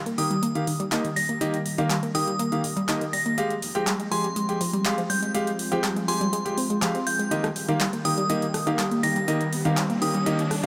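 Up-front stabs from a brilliant concert grand piano, with audible action noise and dub echo, punctuate this driving, bittersweet progressive house build-up at 122 BPM, moving from Eb to Fmadd9 and back. A crystalline FM bell melody with chorus and tape echo rides high above warbling vintage analog pluck arpeggios. Beneath them, a lush, detuned unison pad under a filter sweep sits in the background over a very quiet, round analog bass and a layered big-room drum kit of handclaps, metallic hi-hats and rim clicks, while a huge ambient reverb fills the space and a background riser enters at 8.6 s in this fragment of a longer track.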